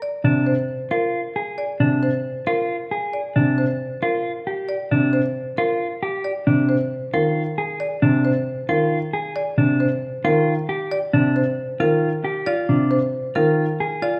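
Pulsing in 7/8 at 270 BPM counted in eighths, with a straight feel, this fragment of a longer classical piece in the minimalist pattern style moves with a bright, propulsive energy in Bb mixolydian, tuned to A4 = 437 Hz. A marimba played with medium mallets carries the melody from the first instant, its rosewood bars giving a woody tone within a narrow span from Bb4 to D5. At 0.2 s a baby grand piano, present and up front, enters with a low accompaniment between C3 and Eb3, while a clean, fingered electric guitar with a dark, compressed sound spins arpeggios in the middle register. The harmony shifts every few seconds through rootless Bbsus2, Csus4, rootless Bb9sus4 and Ebmaj9 before returning to rootless Bb9sus4. The piano drops out at 13.6 s, leaving marimba and guitar to finish at 14.2 s, all set in a moderate recital hall reverb that lends the ensemble a natural sense of space.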